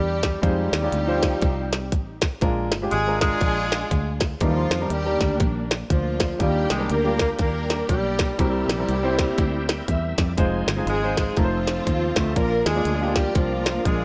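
A breathy, close-miked tenor saxophone with jazz-style vibrato opens this jubilant, uptempo gospel excerpt in Eb major alongside a lush, bowed studio string section, both carrying the melody over a round, dark fingered electric bass. Almost at once a glitchy electronic drum kit joins up front, with a tight kick, tiny snare and clicky hats, swinging the eighths at 121 BPM in 4/4. A clear concert grand piano with deep bass fills in the accompaniment as the chords move from Fm7 through Bb7 to Ebmaj7. At 6.4 seconds a bright, shouting tonewheel organ arrives in the background with sustained chords, lightly overdriven and spun through a fast rotary speaker with chorus vibrato. The organ slips in a fill at 8.9 seconds, with the piano adding its own shortly after, before the harmony moves through C7, Fm7 and F7 to land on Bb, all set in a light reverb for an uplifting, celebratory lift.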